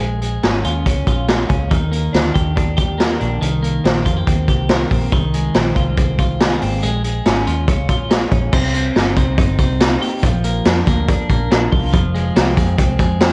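A worn, warbling cassette sheen with light reverb and pitch drift colours this bright, youthful fragment of jangly indie pop, moving at 141 BPM in a straight 4/4. A clean, twangy twelve-string electric guitar plays compressed arpeggios up front through tape echo, while a dark, round, foam-muted fingered bass and a gritty, saturated garage drum kit with a punchy kick, medium-tuned snare, hi-hat and crash drive along from start to finish. The chords move through Bbm7, Ebmaj7, Cm7 and Ab6 before shifting at 8.5 seconds to Cm, Bb and Fm.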